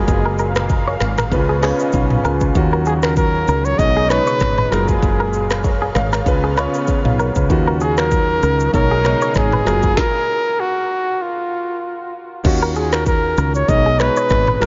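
Smooth and sultry, this afrobeats excerpt at 97 BPM in Eb minor sets a breathy, whispered trumpet melody with tape echo up front over polished grand piano, a detuned sawtooth pad with chorus that drops out at 10.0 s, a round, punchy fretless bass, an electronic afro-pop kit with deep kick, woody snare, dark hats and shaker, and a twangy clean guitar riff with tape echo in the background, all in a dreamy, reverb-soaked mix that breaks into a stop from 10.0 to 12.4 s.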